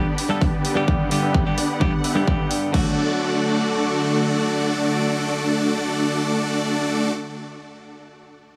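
A huge, euphoric, detuned supersaw lead riff with a filter sweep and digital delay opens this uplifting, triumphant festival progressive house excerpt at 129 BPM in D major. It is joined from the start by a twangy, clean direct-recorded electric guitar carrying 12-bit sampler grit and delay, and by a lush supersaw pad in the background, all three pumping to the sidechain. An overdriven big-room kit with crash and hi-hat and a punchy electronic kick at 0.4 s drive the opening until 2.8 s, as the harmony moves from G to D, and the mix sits in a long ambient reverb.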